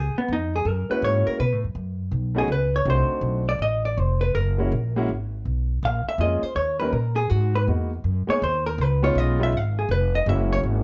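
Small-group swing and bop jazz at 162 BPM in 4/4, this short piece cut from a longer performance has a warm, swinging mood with a swing feel on the eighth notes. A vintage hollow-body electric guitar carries the melody as a solo from the start, its clean, picked tone dark and compressed, sitting up front. An upright bass plays beneath it from 0.0 seconds, plucked on steel strings with a woody, growly sound that is also close and present. A concert grand piano enters at 0.9 seconds with accompaniment, smooth and intimate, with deep bass and audible action noise giving it a vintage character. The harmony moves through chords such as C#add9, F#9, Cdim7 and G#m7, and the dry, dark production keeps the trio sounding close and unadorned.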